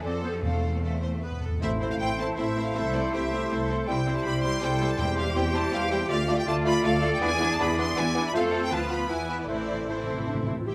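This is a quick classical-period movement for symphony orchestra in triple time, stormy and restless, taken with a flexible, rubato pulse from a longer piece. Clear, smooth violins carry the melody over a second violin line, a soft, airy flute group, lush violas in the background and focused, distant cellos. A rich double bass section sits firmly beneath, while close timpani played with medium mallets mark the opening, play a fill just before 1.6 seconds and return with another fill from 9.5 seconds to the end. At 1.6 seconds the winds and brass join: a very quiet warm clarinet and oboe add second lines, a soft-attacked bassoon fills in the accompaniment, a mellow horn section holds sustained chords, and a distant, roomy trumpet punctuates with stabs. The harmony moves from A minor through C, D minor and a tense E7 before settling back on A minor. A moderate recital hall reverb gives the orchestra a natural sense of space.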